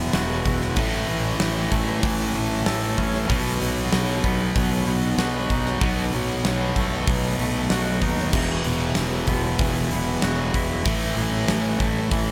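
A straight 4/4 pulse at 95 BPM drives this soaring, cinematic post-rock excerpt in A lydian, where a huge arena drum kit with a fat snare, punchy kick and bright cymbals comes in up front at 0.1 s, joining a compressed, distorted fuzz guitar riff, a growly overdriven fingered bass, a twangy, scooped electric guitar playing arpeggios through harmonic tremolo and tape echo in the background, and a very quiet, pure organ-like pad holding sustained chords as the harmony moves from Esus2 through A, B and B7 before returning to Esus2 and A, all set in a small room with light reverb.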